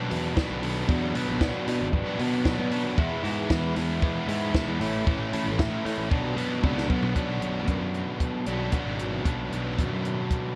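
A straight 4/4 pulse at 115 BPM drives this short, cool and restless indie rock cut from a longer piece, set in B dorian. A double-tracked, overdriven electric guitar sits up front playing the riff across the full 10.6 seconds, with the chords moving from Bm through E and A to Bmadd9 before returning to Bm. Underneath, a fuzzy, overdriven picked electric bass adds a growly, amped low end, while a compact cocktail drum kit sounds dry and natural, with a punchy kick, a high-tuned snare, hi-hat and toms. A drum fill from 6.6 to 7.2 seconds ushers in a new section that runs to the end. The whole recording carries light reverb and the worn, warbling pitch drift of old cassette tape.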